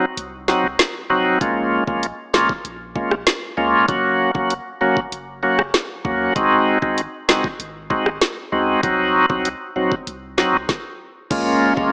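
Dancehall with a tough, bouncy mood, cut from a longer piece and riding a straight, steady groove. A reedy, bright tonewheel organ plays the chords up front from the opening, its key click audible as a slow rotary speaker turns and sidechain pumping makes it breathe. Electronic drums with a knocking kick, woody snare and dark hats sit forward alongside it, while a punchy sine sub bass with a pitch-drop attack stays deep and mellow in the background; the progression moves from Cdim through Bbm7, Gb and Ab7 before circling back. After a brief opening break, the arrangement hits a stop at 10.7 seconds, and a lush, detuned sawtooth pad with chorus and phaser swells in at 11.5 seconds. The mix pairs a moderate digital hall ambience with a dry, gritty hardware character, giving it a compact, small-speaker sound.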